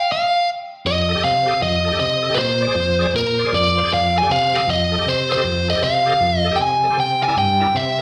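Swung eighths at 157 BPM in 4/4 drive this rollicking yet laid-back blues in F mixolydian, cut from a longer piece and heard live through a club PA with light reverb, as a biting, overdriven electric lead guitar with slapback echo picks out the melody up front from the start, and a full, shouting tonewheel organ with key click, chorus vibrato, light grit, slapback echo and a slow rotary speaker enters at 0.8 seconds to accompany it over F7, Bb7 and C7.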